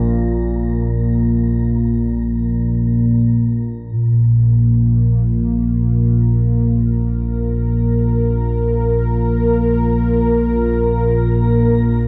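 Ominous and dark, this dark ambient drone excerpt unfolds in free time around a warbling, vintage analog drone built from sawtooth and pulse waves with chorus, sitting up front from the start. An airy, breathy wind-like noise texture drifts in the background with shimmer reverb and fades out by 4.0 seconds. At 4.6 seconds a deep, full-bodied analog pad of detuned sawtooth and triangle waves with a sub octave enters with sustained chords, all set in a vast, echoing cathedral-like space.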